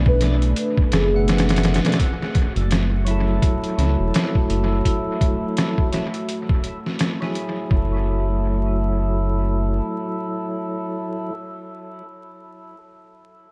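Dark and hypnotic, this short trip hop fragment moves with a swung 4/4 feel under a light reverb, its echo-heavy mix dusted with vinyl crackle. A sampler-style drum kit sits up front, compressed, pitched down and gritty, with a thumpy kick, medium-tuned snare and hi-hat carrying dub echo until it drops out at 7.9 seconds. Beside it, a round, deep analog bass blends sawtooth and sine with ring modulation, sustaining low notes through 9.8 seconds. A moody, detuned analog pad holds sustained chords with a sub octave and chorus, while a fat, lightly overdriven tonewheel organ adds percussive third-harmonic accompaniment through a stopped rotary speaker, harmonic tremolo and tape echo, lasting to the end. Only in the opening moments does a pure, breathy sine lead glide through a brief, mellow phrase in the background, colored by vibrato, portamento, analog chorus, 12-bit sampler grit and dub echo, before the harmony shifts from Bm7 to F#m7 at 2.0 seconds.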